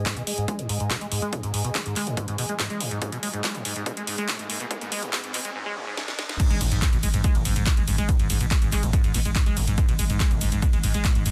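A dense, heavily limited and nearly dry mix opens this cut from a longer piece of driving, industrial peak-time techno at 142 BPM in straight 4/4, tuned to A4 = 438 Hz. A squelchy, resonant sawtooth acid bass riff sits up front under a filter sweep with lush chorus, dub echo and sidechain pumping, while a breathy, chorused pad hovers in the background until 5.6 s. A distant electronic riser, a punchy high-pass-filtered kick and a layered kit of cracking snare, metallic hats, handclaps, shaker, ride and crash drive the build-up. A drum fill leads to the drop at 6.4 s, where a growling, tube-saturated 808-style bass on G#1 enters under a low-pass filter, and a very quiet, swarming, detuned granular drone joins at 7.9 s.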